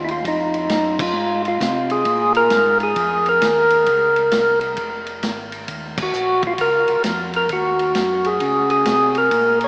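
Soul jazz organ trio in a bluesy, soulful swing, where a fat, up-front percussive tonewheel organ with key click, overdrive, slow rotary speaker and tape echo carries the melody over a round, dark organ bass with chorus vibrato and a gritty vintage drum kit with dark cymbals, hitting band accents at 0.9 and 5.9 seconds as Bbm9 moves to Ebm9, all soaked in a dreamy cathedral reverb with a small-speaker sound in this brief cut from a longer piece.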